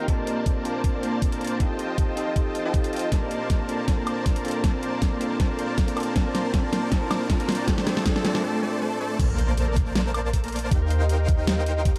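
A clean, bell-like tine electric piano, a ringing fingerpicked Celtic harp under a filter sweep, a thick detuned supersaw riff and a deep, boomy 808-style bass open this lush future bass excerpt in Bb major at 158 BPM, with a half-time, lightly swung feel; all four pump against the sidechain, and the piano, harp and supersaw trail dub echo as a tape-warm, layered dubstep kit with a huge snare and bright hats joins an up-front, knocking electronic kick through a drum fill and a brief break, while a very quiet riser leads into the drop at 9.2 seconds, where the electric piano stops and an impact lands, all set in a dark production with light reverb.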